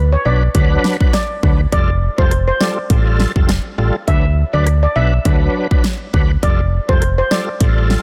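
Dancehall with a sunny, summery mood at 102 BPM, built on a round, dark FM bass and a punchy, layered pop drum kit up front, with a gritty overdriven tonewheel organ on slow rotary speaker and chorus vibrato filling out the D6 and Fadd9 changes while a shimmering, vintage steel pan carries the melody through digital delay in a dry, dense, heavily limited mix.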